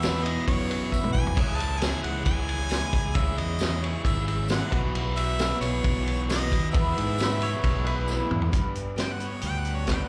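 Folk rock with a heartland rock drive, this warm, nostalgic live club clip moves in a straight 4/4, with a clear, punchy harmonica carrying the melody over a shimmering, woody twelve-string acoustic guitar, a biting double-tracked overdriven guitar riff, a fingered electric bass, a dark-cymbaled vintage drum kit with fills near 0.9 and 8.1 seconds, a jingly tambourine and a very quiet worn baby grand piano. A fat tonewheel organ with rotary speaker and key click holds sustained chords beneath, while a bright pedal steel guitar with volume swells adds a brief second line at 7.4 seconds. At 8.5 seconds the chords shift and the harmonica breaks into a solo, its slapback echo ringing through the venue's light reverb.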